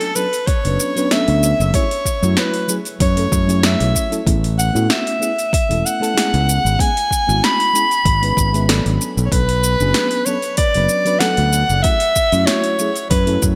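Bright 1980s-style digital production and a moderate plate reverb frame this smooth sunset chillout excerpt at 95 BPM with a light sixteenth-note swing, where a close-miked soprano saxophone with vibrato and delay carries the melody up front over a round, dark FM electric piano treated with chorus, phaser and delay, a deep house kit of punchy snare, metallic hats and shaker with overdrive and gated reverb, an overdriven electronic kick entering at 0.5 seconds, and a growly, overdriven fingered electric bass arriving at 0.7 seconds, all over chords moving from Bm9 through F#m9, Amaj7 and C#m7.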